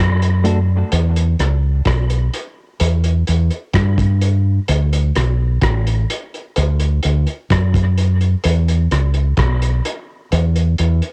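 A deep, round fingered electric bass sits up front in this spacious, laid-back dub reggae clip, dark and punchy as it moves through D, E minor and E5 harmony. A cloth-damped drum kit of kick, hi-hat and rim click thuds along with a tight, muffled, saturated sound and rolled-off top, its cassette grit matching the lo-fi small-room feel of this home recording. A clean electric guitar appears only briefly, from 0.4 to 0.6 seconds, compressed and touched with subtle chorus and dub echo.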